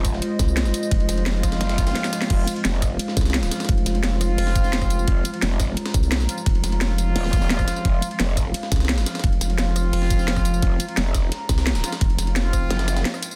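Dark technical drum and bass with a futuristic, mechanical mood, where a knocking electronic kick and an overdriven kit with a cracking snare and bright hats drive the groove, and a gritty, high-tuned breakbeat kit sits in the background. Up front, an aggressive, saturated growl bass plays in bursts from the opening, and a nasal, resonant vowel-sweep wobble bass joins it moments later, while a deep, detuned analog pad holds moody chords beneath. A mellow brass section with light vibrato enters at 1.2 seconds with stabs carrying tape echo, a drum fill lands at 2.0 seconds, and the kick drops out at 12.7 seconds in this dense, heavily limited, fairly dry mix.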